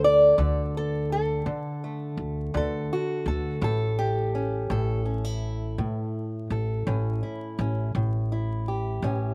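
Acoustic country blues in a straight 12/8, this short fragment cut from a longer piece carries a swaggering, soulful mood. A fingerpicked, ladder-braced acoustic guitar with old strings carries the melody, its boxy, woody tone sitting up front from the first second to the close at 9.3 seconds. Beneath it, a pizzicato upright bass on steel strings holds down the low end with a warm, woody body, also close and present throughout. The harmony opens on D before moving to A at 3.6 seconds. Recorded outdoors with little reverb and a layer of vinyl crackle, the sound feels dry, intimate and weathered.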